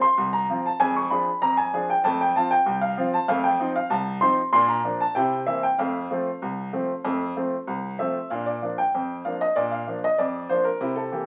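A bright, woody upright piano plays alone from start to finish in this cheerful, jaunty ragtime piece, sitting up front with a brilliant, vintage sparkle as it ranges from C2 to Db6. At 96 BPM in a straight 2/4, it moves in F major through a diminished chord and a dominant seventh before shifting to a new section on Bb at 8.3 seconds. The sound carries the crackle of a very old 78 rpm record and a wet studio reverb, and the passage is cut from a longer piece.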